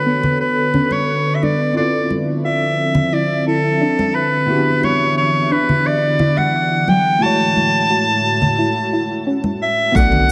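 Heard in a moderate concert hall, this relaxed, smooth sunset chillout piece at 88 BPM drifts through Bm9, Dm9, Em9 and F#m9 as a warm soprano saxophone with light vibrato carries the melody up front through digital delay, over a worn, slightly out-of-tune tine electric piano, an ethereal chorused pad shaped by a filter sweep, soft arpeggiated plucks roughened by 12-bit sampler grit, and bright, dry congas, until a round analog bass and a punchy electronic kick enter at 9.9 seconds and tape-toned shaker and congas follow at 10.0 seconds.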